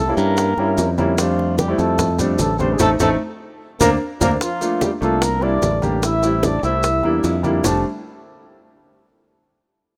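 Sophisticated and sunny, this Afro-Cuban jazz excerpt in F major moves at 149 BPM, with a dark, breathy trumpet carrying the melody over a whispered, very quiet trombone second line, a growly, up-front electric bass, warm grand piano accompaniment, and background congas and tight, high-tuned bongos joined by grainy maracas, set in light studio reverb with a rough home-demo feel, plus a band accent from 2.8 to 4.4 seconds topped by a drum fill at 3.6.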